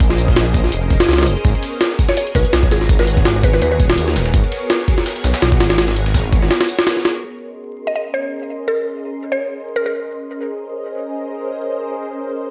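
Swung sixteenths at 166 BPM drive this dark, raw drum and bass cut in Bb phrygian, with a gritty, pitched-up jungle kit up front (thumpy kick, high-tuned snare, hi-hat) over a tape-warm soul kit of hi-hat, snare and tambourine set back in a large room, a thick, beating, menacing detuned saw bass, and silky string-machine chords with phaser and ensemble chorus that carry on under a filter sweep once the bass drops out at 6.5 s and the drums fall away near 7.0 s, while a woody, round mallet-like pluck with chorus, cassette tape and dub echo surfaces at 2.1 s and again at 7.9 s, the whole mix dry and lightly reverberant with vinyl crackle and a dull, rolled-off top.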